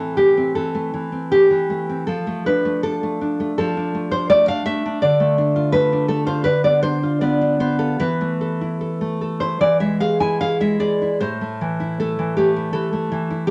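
Passionate and melancholic, this brief cut from a longer romantic piece for solo classical guitar unfolds in A minor at a free, rubato pace of roughly 72-84 BPM in 4/4. A single fingerpicked nylon-string guitar sits up front with a full-bodied, deep classical tone, moving from Am through Dm/F and Dm to a suspended Esus4 at 8.0 s before resolving via E back to Am at 11.2 s. A wet studio reverb surrounds the guitar throughout the short passage.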